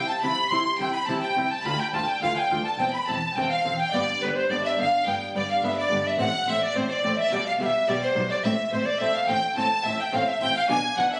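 Captured on a phone in a wet recital hall with a dulled top end, this brilliant, festive excerpt of a baroque-style concerto movement in C major moves at 106 BPM in 4/4, with an airy, chiffy alto recorder and a rich, focused violin section sharing the melody over a darker, soft-edged second violin line, a delicate fingerpicked lute in the background, a smooth-topped viola section, and a close, even cello section joined at 0.2 seconds by a bowed double bass section.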